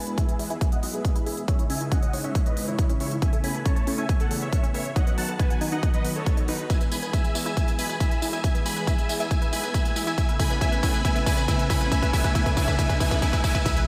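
Uplifting trance build-up with a soaring mood, where a huge, detuned supersaw lead carries the melody through filter sweeps, delay and sidechain pumping over silky string-pad chords with ensemble chorus, a fat sawtooth bass in the background, nasal chorused and phased pluck arpeggios, a punchy up-front kick and a tape-tinged dance kit of crash, crisp hi-hat and tambourine, all set in a dreamy hall reverb, with a drum fill from 6.7 seconds, a very quiet riser and sub drop from 9.1 seconds, and an impact at 13.7 seconds.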